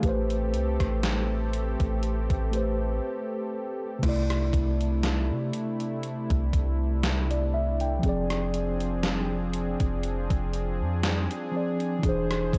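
A dry, gritty hardware sound with a cassette-tape character and a digital ambience frames this smooth, tender slice of contemporary R&B, cut from a longer piece. A mellow tine electric piano carries the accompaniment, clean and played through its built-in speakers, while an analog sawtooth pad holds detuned, soft-attack chords beneath it, colored by chorus. An up-front 808-style bass sustains long, deep sine notes with a fast attack that decays into darkness. A gated 80s digital drum machine, tape-warm and sampler-style, supplies a thumpy kick, hi-hat, rim click, crash cymbal and a snare treated with gated reverb, re-recorded in a large room for an electronic punch. The swung sixteenth-note feel keeps the groove relaxed as the harmony moves through Am9, C69, Fm6 and E7b13, with a brief break at 3.0 s before the passage begins again at 4.0 s.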